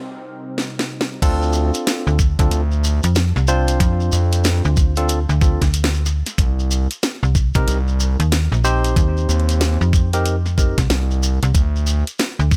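This funky, swaggering glitch hop excerpt opens on a smooth, detuned analog pad with chorus and sidechain pumping, joined at 0.6 seconds by a drum fill from a layered drum-and-bass kit with a cracking snare, hi-hat and crash in studio reverb. At 1.2 seconds the drop lands with an up-front knocking electronic kick, a gritty, saturated synth bass, a grainy shekere, and barky, bright electric piano stabs through a combo amp with dub echo and pumping. A snappy FM bass with a metallic attack joins at 2.1 seconds, and the swung groove moves over Dm7 and Cm7 in a digital ambience.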